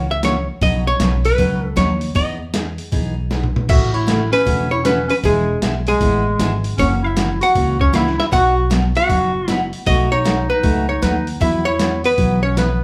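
A roomy, reverb-washed live-band sound opens this playful, down-home western swing excerpt in E major, swinging at 156 BPM with chords moving from F#7 through Emaj7, A6 and B7 before settling on Esus2. An up-front, hollow-bodied archtop guitar carries the melody in a dark, clean tone over a full-bodied acoustic dreadnought with audible finger squeak, a woody pizzicato upright bass, and a gritty, pitched-down sampler-style drum kit with a thumpy kick and tape-warm grit. After a drum fill at 3.3 seconds, a breathy, clear clarinet enters at 3.7 seconds with a soft attack and light vibrato, adding a jazz-style second line.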